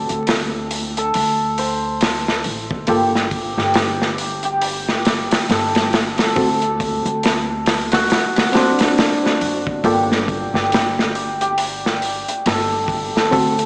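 Melancholic and dark, this trip hop excerpt sets a ringing, shimmering cimbalom melody with tape echo over a woody, growly pizzicato upright bass and a crunchy breakbeat kit with a punchy kick and rolled-off top sitting up front, all swung on the sixteenths. At 2.9 seconds a reedy, barky electric piano joins in the background, lightly overdriven with fast tremolo through its built-in speakers. A plate reverb soaks the mix in a dreamy haze, with vinyl crackle and a small-speaker sound.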